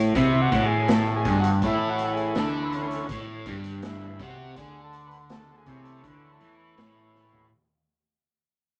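A buzzy, overdriven combo organ with light vibrato takes an up-front solo over a phaser-treated, double-tracked semi-hollow guitar riff, a round, dark fingered bass sitting in the background and a gritty, saturated garage drum kit with a punchy kick, all in a hypnotic, trippy psychedelic rock excerpt at 82 BPM in A major that fades out across its length, with a drum fill arriving at 7.1 seconds.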